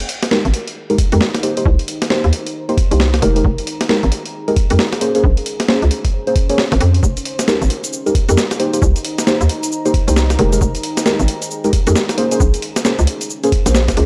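Moody and bouncy, this short cut from a longer UK garage track rides a swung two-step groove at 134 BPM in F minor. A gritty, pitched-down sampler-style kit of hi-hat, shaker and a high-tuned snare sits up front alongside a thumpy, compressed electronic kick that enters at 1.0 seconds, both carrying the roomy air of a large space. Underneath, a hollow, punchy FM bass knocks out short decaying notes, while soft, nasal chord stabs with chorus and tape echo outline a loop of Fm11, Cm7 and Bbm9. A deep, detuned ambient pad drifts in at 0.7 seconds, sitting in the background with slow attack, long release, reverb and sidechain pumping. The whole recording has a dry, gritty hardware character to it.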